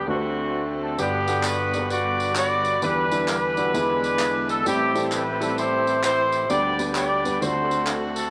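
A punchy, up-front horn section carries the melody in this uplifting, hopeful uptempo gospel excerpt at 131 BPM in G major with a swung 4/4 feel, over an intimate baby grand piano whose action noise is audible and a bright, lightly overdriven tonewheel organ holding sustained chords in the background through a slow rotary speaker and chorus vibrato, while tambourine and group handclaps join at 1.0 s and a moderate plate reverb surrounds the ensemble.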